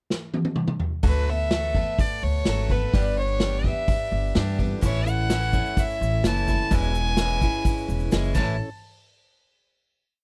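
A straight 4/4 beat at 127 BPM opens with a fill on a vintage drum kit with dark cymbals and a punchy kick, leading into a short, jangly folk rock and heartland rock piece in A major with an open-road feel. Woody pizzicato upright bass with a dotted figure and bright, boxy strummed steel-string acoustic guitar support a rich, biting fiddle melody built from motifs, while a mellow tonewheel organ with slow rotary speaker holds background chords from 4.5 s and a grainy tube shaker joins at 4.8 s. The dry, close sound keeps the drums, bass and fiddle up front until a final hit at 8.6 s.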